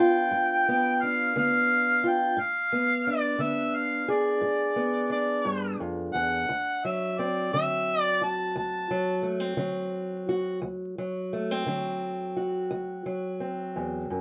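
A soulful, gritty excerpt of acoustic country blues in D mixolydian at a slow 58 BPM in 12/8 opens with a mellow, up-front harmonica singing a jazz-style melody, full of scooped notes, soft attacks and light vibrato, over a dark, boxy fingerpicked parlour steel-string guitar moving through G7, G#dim7 and D7, until the harmonica drops out at 9.3 seconds and the guitar carries on alone to 14.2 seconds, all wrapped in light reverb and vinyl crackle.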